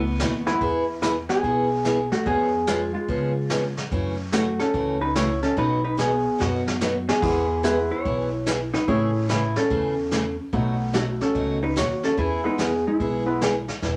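Cheerful and playful, this swung country and western swing excerpt is led by a dark, clean, compressed hollow-body jazz guitar carrying the melody up front. Beneath it sit a thumpy pizzicato upright bass and a bright, boxy parlour acoustic guitar picking the accompaniment, while a vintage brush kit with dark cymbals and a punchy kick plays a fill at 6.4 seconds. A clear upright piano with short sustain, heard only briefly at the start, returns at 7.2 seconds as the chords move through E, F#m7, Amaj7 and B7, all set in a wet small-room reverb with a natural studio feel.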